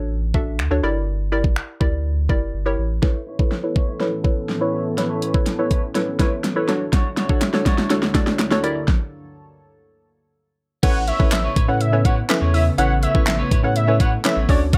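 A straight 4/4 pulse at 123 BPM drives this upbeat, summery dance-pop passage, where a hollow, bouncy square-wave pluck and a round sine sub bass pump beneath an overdriven, electronic pop drum kit with a knocking kick; a shimmering retro pulse-width pad and a chorused clean electric guitar riff arrive at 3.0 s for a filtered build-up that stops at 8.9 s, crisp group handclaps sit in the background, and a fat, detuned analog lead carries the melody into the drop at 10.8 s as the sub bass returns, in a dry, up-front mix.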